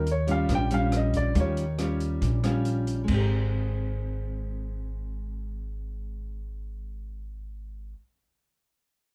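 This short bossa nova excerpt opens on a romantic, sunny note, with a natural-sounding grand piano carrying the melody high in its range over an Eb9 chord. Beneath it, a fingerpicked nylon-string guitar sits up front with a classical touch, while a woody, thumpy upright bass, plucked on gut strings, anchors the low end. An open jazz kit plays from a distance in a roomy studio space, its dark cymbals, hi-hat, rim click and boomy kick rolled off at the top, before dropping out at 3.2 seconds. The harmony settles onto Abmaj9 as a new section begins at 3.1 seconds. The piano melody is brief, ending at 2.0 seconds, and the guitar and bass carry on together, the bass stopping at 7.9 seconds and the guitar continuing to the close at 8.1 seconds. Light reverb and a dark, warm production give the whole thing an intimate, mellow glow.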